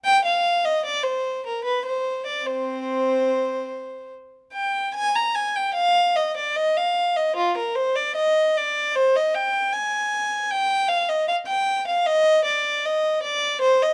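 A moderate large-studio reverb surrounds a single up-front violin in this solemn, flowing baroque-style suite movement in C minor, taken from a longer piece and moving at 76 BPM in a rubato 3/4. The bowed solo line has a rich, reedy gut-string tone played in period style with light vibrato, ranging from C4 to Bb5. Its opening idea returns at 5.0 seconds and carries through to 13.9 seconds.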